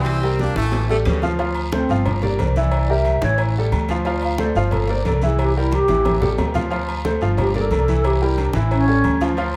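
Passionate and danceable, this salsa excerpt in D minor moves at 180 BPM, opening with a brief punchy phrase from a tight horn section before a clear saxophone section takes a short second line at 0.9 seconds. From 1.7 seconds a mellow, hollow alto flute with vibrato and a soft attack carries a distant solo over a bright, polished upright piano and a woody, thumpy pizzicato upright bass, both up front, moving through Dm7, Gm7 and C7 changes. Congas, round low-tuned bongos with cowbell, ringing timbales with agogo bells and a raspy guiro sit in the background, with drum fills at 0.7 and 5.7 seconds, all bathed in a moderate large-studio reverb.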